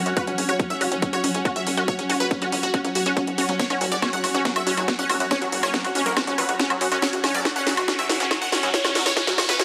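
A straight pulse drives this intense psychedelic trance build-up, with a tight electronic kick up front, a garage kit of cracking snare, bright hats and woodblock, and a punchy sawtooth sequencer bass running in the background, while a drum fill starts at 3.6 seconds. A detuned supersaw stab carries the melody with phaser and delay, a lush unison pluck plays the riff, and a pulsing gated texture holds sustained chords alongside a very quiet, distant symphonic string section, all under filter sweeps and a hall reverb. A metallic, distorted wobble bass flickers in briefly at the very start and again at 5.5 seconds, and a riser enters at 6.3 seconds and runs to the end of this section cut from a longer piece.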